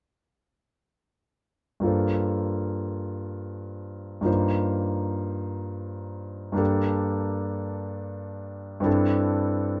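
A concert grand piano, intimate and up front with deep bass, long sustain and audible action noise, carries this short impressionist solo piece in G minor from 1.8 seconds to 9.8 seconds. The mood is wistful and nocturnal, moving in a rubato 3/4 at roughly 72 to 82 BPM. Its range spans G2 to C5, and the harmony drifts through Gm11, F9sus4/G, Gmadd9 and C69/G, each chord held over a G bass. A light reverb surrounds the polished playing, and the production is dark and warm, with nothing above 7.8 kHz. The recording is cut from a longer piece.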